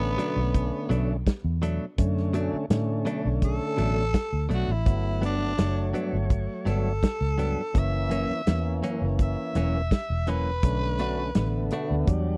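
A raspy, growling tenor saxophone carries the melody over a thick, lightly overdriven tonewheel organ with slow rotary speaker, a round, foam-muted fingered electric bass, twangy clean guitar stabs and a dry soul drum kit with a tight kick in this smoky, soulful straight-eighth soul blues excerpt, moving from Bm7 through Gmaj7 and F#7 back to Bm7 in a close 1970s-style studio sound.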